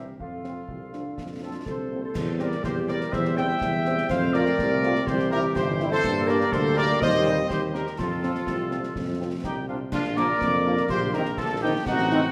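A spirited, rousing military-style march for wind band in a straight 2/4 at 124 BPM, settling into Bb major from 6.0 s, cut from a longer piece. A dark, tight trumpet section carries the melody up front over a mellow woodwind second line, a warm tuba bass, background French horns, concert bass drum, snare and dark clash cymbals, with trombones adding sustained chords from 2.2 s and a background euphonium appearing in two brief passages. An airy, wooden piccolo with vibrato joins at 9.4 s, and the whole band sits in a wet scoring-stage reverb.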